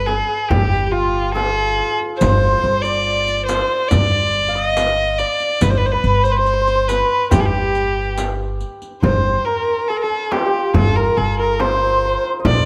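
Persian modal ensemble music in a warm, passionate mood, this short passage from a longer piece sets a rich, smooth bowed violin up front with vibrato, over a shimmering, ringing hammered santur and a woody, dark pizzicato upright bass. Behind them, a deep frame drum struck with hard hands and a tight tombak played with soft hands sit in the background, joined from 2.2 to 8.9 seconds by a riq whose dark jingles have a vintage, band-limited tone. Close, detailed microphones and light reverb frame the group, and the music moves into a new section at 9.0 seconds.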